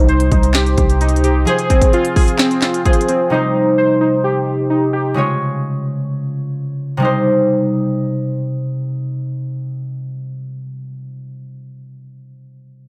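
A bright, ringing, fingerpicked concert harp plays accompaniment through this melancholic, brooding half-time trap fragment to 11.4 seconds. It is joined at the outset by warbly, detuned lo-fi synth keys with chorus, digital delay and a filter sweep playing nostalgic arpeggios until 5.2 seconds, and by a deep, dark sine 808-style bass that sustains and decays by 1.5 seconds. An up-front trap kit of hard-clipped kick, sharp snare, crisp hi-hat and handclaps drops out at 3.2 seconds, all in a dry sound.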